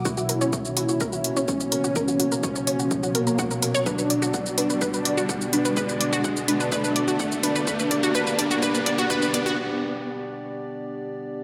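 A straight 4/4 pulse at 126 BPM from a heavy, tape-warm electronic kick sitting in the background and layered shaker and hi-hat drives this hypnotic, cinematic melodic techno build-up in B harmonic minor, where a thick, detuned unison lead with vibrato and digital delay rides over bright, round filter-swept pluck arpeggios with dub echo, a moody, nasal pad and an evolving pulse-width drone pump beneath through sidechain and chorus, a riser runs from 0.3 s, a drum fill begins at 3.9 s, and after the F#, Bm and G progression the break at 9.6 s leaves the pad sustaining alone on the G chord in a lush hall reverb.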